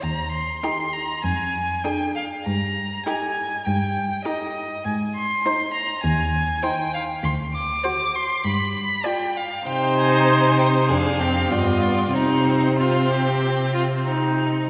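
Urgent and dramatic, this quick classical-period movement for string quartet, cut from a longer piece, moves with a rubato feel in 4/4. A single violin carries the melody up front, its tone smooth and even with vibrato, while a close, up-front cello holds the bass with the same steady, smooth bowing from the opening moment. A second violin enters at 0.6 seconds with an intense, more distant second line, and the viola arrives alongside it as a soft-attacked, expressive accompaniment, sliding between notes with portamento and sitting a little lower in the balance. Each player bows with vibrato, and together the four voices form a rich blend. The harmony travels from Eb through Ab and D7 to G7 before settling on C minor, then returns through G7 to close on C minor again. A wet concert hall reverb surrounds the quartet, giving it the spacious ring of a church or concert hall.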